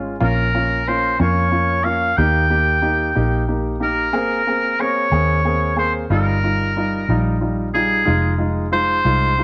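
A tender, romantic six-eight pop ballad at 61 BPM, this short passage cut from a longer piece sets a clear, classical-style oboe melody with light vibrato and slapback echo, entering at 0.2 seconds, over a short-sustained warm grand piano and a dark, round, punchy muted electric bass, all bathed in echo-chamber reverb as the harmony moves from Bbm through Eb, Abadd9 and Ebadd9/G to Fm7.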